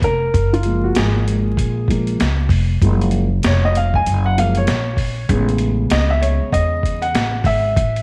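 A dark, mellow upright piano with long sustain takes the lead throughout this relaxed, cool jazz-hop clip cut from a longer piece, moving from F#maj9 to Amaj9 at 5.3 seconds over a woody pizzicato upright bass and a gritty, pitched-down boom bap sampler-style kit with a thumpy kick, high-tuned snare and hi-hat, all at a swung 97 BPM in F# major under vinyl crackle, light reverb and studio ambience.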